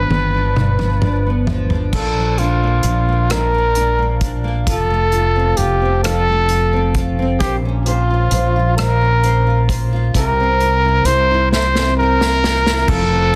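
Romantic and heartfelt, this short cut from a longer six-eight pop ballad unfolds at an unhurried, swaying pace in 6/8. A breathy trumpet carries the melody up front in an intimate, jazz-style solo, its whispered tone softened by light vibrato and a gentle attack, with plate reverb and digital delay adding a halo around each phrase. Beneath it, a double-tracked nylon-string guitar is fingerpicked in a classical manner, while a mellow fretless electric bass sits dark, round and direct close to the listener. An unplugged acoustic drum kit played with bundle sticks enters at 0.1 seconds, using a punchy kick, a medium-tuned snare with soft clipping, rim clicks, hi-hat, toms and crash, and drum fills mark the opening and the stretch from 11.5 to 12.9 seconds. The harmony moves from G7 through Bb, F and Bbmadd9 to C7, all set in a moderate studio room and a dense, heavily limited modern master.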